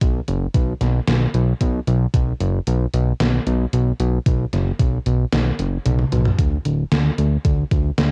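A fat, detuned sawtooth bass sits up front from the start, pumping with sidechain compression beneath an overdriven, thumpy electronic kick, while a gated 80s digital drum machine adds hi-hat, a gated-reverb snare and toms. Both drum parts carry a sampler-style grit and the air of a large room. This driving, moody synthwave fragment in B minor moves at 113 BPM with a straight 4/4 feel, and a drum fill at 5.9 seconds leads into a new section at 6.4 seconds. The whole cassette-recorded home take has a dry, close sound.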